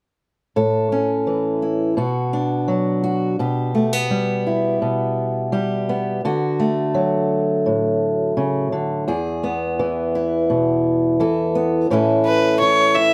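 Folk at 85 BPM in 4/4 with a straight feel, this short cut from a longer piece carries an uplifting, hopeful mood. A fingerpicked steel-string acoustic guitar carries the accompaniment from 0.6 seconds, sitting up front with an audible finger squeak and a concert-style sound. Its harmony moves from A through Bm, G6/B, D and E before arriving back on A at 11.9 seconds. Shortly after that return, at 12.3 seconds, a single bowed fiddle enters with the melody, its gut-string tone reedy, close and placed up front, and it sits a little louder than the guitar. Light reverb gives the recording a gentle sense of space, and the tuning rests at A4 = 441 Hz.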